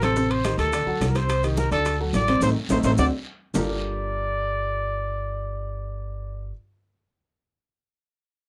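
A breathy, mellow trumpet with light vibrato and scooped notes carries the sultry, sophisticated melody of this Afro-Cuban jazz excerpt in G minor at 213 BPM, over clear, short-sustained baby grand piano chords and a woody, dark pizzicato upright bass, while ringing congas, tight high-tuned bongos, saturated metal-shell timbales, raspy guiro and grainy maracas play through a band accent and drum fill before the percussion drops out at 3.6 seconds, leaving trumpet, piano and bass to settle onto a Gm9 in a dry, close 1970s-style studio sound.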